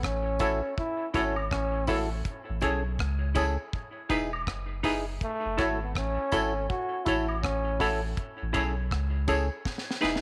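A breathy trombone with light vibrato and dub echo carries a second line over a round sub bass and a dry reggae kit with a high-tuned snare in this hypnotic, serious roots reggae excerpt at 81 BPM in F# dorian, joined at 0.4 seconds by clean picked electric guitar with tremolo, hollow percussive organ stabs with chorus, and distant tambourine and woodblock, cycling through F#m7, Amaj7 and Emaj7 until the trombone stops at 8.0 seconds and a drum fill arrives at 9.7 seconds.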